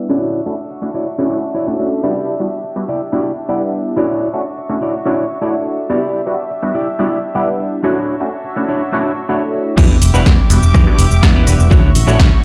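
Sunny and funky, this filtered disco house cut moves at 124 BPM in a straight 4/4, alternating between Dmaj9 and Em7 chords. From the start, a detuned sawtooth polysynth comps up front with a warbling, vintage character, colored by chorus, phaser and cassette tape, while a chamber violin section holds sustained chords with light vibrato and a reedy, gut-string tone roughened by 12-bit sampler grit. A clean, dark electric guitar picks a scooped riff alongside them, and these parts pump against the sidechain and sit under a low-pass filter that sweeps through the opening 9.8 seconds. At 9.8 seconds the drop arrives: an overdriven electronic kick punches up front with an analog drum machine supplying snare, hi-hat, rim click, shaker and crash, and a bright, growly fingered bass with tube saturation enters low in the mix's foreground. The whole thing plays back as if through a big sound system in a bare stone room, with light reverb around it.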